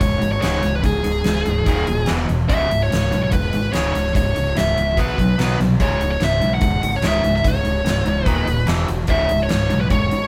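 Hard rock at 146 BPM in C# minor, menacing and driving, cut from a longer piece with the band playing live in one room under moderate studio reverb. Up front, a dark, high-gain lead guitar carries the melody while a huge arena kit with a fat snare and punchy kick drives the groove, and two bright, overdriven stack guitars pick the riff in the background over a punchy fuzz bass. The chords circle around C#m, passing through D#5, E5 and B5 power chords.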